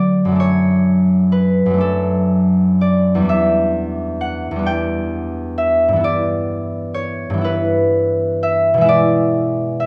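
A solo concert harp opens this short classical passage, cut from a longer piece, ringing out in a peaceful, dreamy mood. The tempo is slow at 42 BPM in 6/8, with uneven beats and a free rubato that lets each phrase breathe. Fingerpicked and up front, the acoustic harp has a warm, ringing tone that spans from E2 up to G5. Its harmony drifts from D/F# through Em7 and Em/G before reaching E7/B at 8.9 seconds. A wet recital hall reverb surrounds the instrument, giving the plucked notes a lingering bloom.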